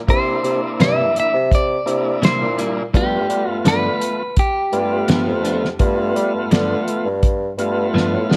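A dry, cloth-damped drum kit with a fat snare and tight kick sits up front in this soulful, rollicking straight-eighth soul blues at 84 BPM in G mixolydian, where a clean, picked electric guitar carries the melody, a thick tonewheel organ with light overdrive and slow rotary speaker supplies the accompaniment, a warm bassoon with light vibrato plays the bass line, and a bright, scooped direct-recorded guitar adds lush chorused stabs from 0.8 s over a move from C7 to G7 in light reverb before a drum fill at 7.9 s.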